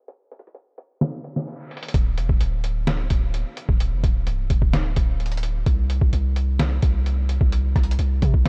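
A compressed, pitched-down sampler-style drum kit opens this eerie, hard-hitting trap excerpt at 129 BPM in a half-time feel, its muffled hi-hat, rim click, fat snare and thumpy kick sitting up front under a filter sweep, with the kick dropping out from 1.0 to 1.9 seconds. At 1.9 seconds a deep, sine-toned 808-style bass arrives, up front with a fast attack and long, mellow decaying notes ranging from C1 to C3. The whole excerpt sits in a low-pass-filtered digital ambience.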